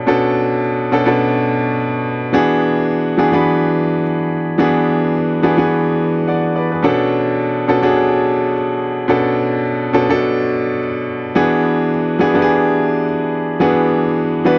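A clear, intimate baby grand piano plays alone at 106 BPM in a driving, sultry disco excerpt in B dorian, moving between Bm9 and E9 chords from B2 to F#5 with long sustain and audible action noise, set up front in a dry, close 1970s-style studio sound.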